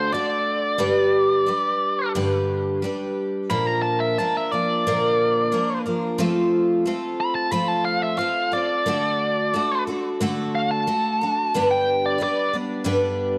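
A biting, overdriven lead electric guitar with tape echo plays a soloing melody over a shimmering, octave-doubled twelve-string acoustic guitar picked up front in this nostalgic rock excerpt, both placed in a dark, warm production with moderate echo-chamber reverb and small-room ambience, before the lead falls away at 12.5 seconds and the full-bodied acoustic rings on alone until 13.4 seconds.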